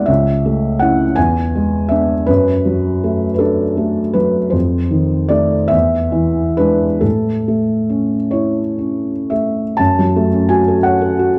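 Swaying in a lilting 12/8 and stretched by a free, breathing rubato, this short fragment of a romantic nocturne drifts along with a dreamy, tender mood. A felt-muted upright piano carries the whole thing alone, its tone soft, dark and intimate, with the thick felt lending a mellow, hushed quality that still sounds natural. Close, detailed microphones keep the instrument up front, while a moderate recital hall reverb gives the notes a gentle halo around them. The harmony moves from A over C# through E7 and D over F# to an unexpected F7, then returns home to A at about 7.0 seconds. Around 9.8 seconds the music turns toward F#m as a new section begins, before the clip is cut off at 11.4 seconds.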